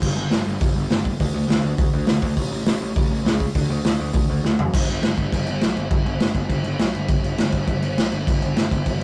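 A rough, dry rehearsal-room recording with saturated grit frames this rowdy, rebellious punk rock clip at 204 BPM, where an up-front garage drum kit with a punchy kick, dark cymbals and a pumping small-room sound plays from start to finish beside a growly, fuzz-overdriven picked electric bass, and a drum fill at 4.4 seconds leads into a new section at 4.7 seconds.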